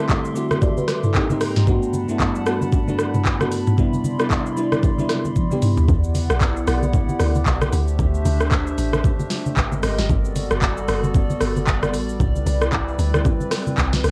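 Swung sixteenths drive this late-night, soulful amapiano cut, with an up-front electronic afro-pop kit of knocking kick, sharp snare, metallic hats, handclaps, rim clicks, shaker and toms, and soft-handed, low-tuned congas murmuring in the background. A sparkling, bell-like FM electric piano with chorus carries the opening chords over a hollow, flute-like pad that holds mellow sustained harmony throughout. After a drum fill, the drop at 5.9 seconds brings in a deep, round, percussive log drum bass, dark and decaying, as the electric piano falls away, all under a light reverb and a hazy cassette-tape sheen.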